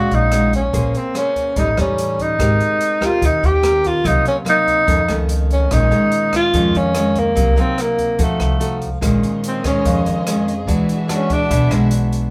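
A melancholic, intimate bossa nova in 4/4 with a straight feel opens with breathy tenor saxophone, nylon-string guitar and upright bass together, and an open jazz drum kit joins a moment later on hi-hat, kick drum and rim click. The saxophone carries the melody up front in a mellow, whispered subtone with vibrato, scooped notes and a soft attack. The fingerpicked guitar sits equally forward, full-bodied and classical in tone, while the pizzicato bass sounds woody and thumpy beneath it. The drums are airy and polished with a boomy kick. The harmony moves through rich jazz chords such as Bbm9, Abmaj9, Cm7b5 and F7b9. At 9.0 s the saxophone moves into a solo as a dark, lush violin section enters in the background with sustained bowed chords, vibrato and portamento, all captured as a band playing live in one room with light reverb, in a passage cut from a longer piece.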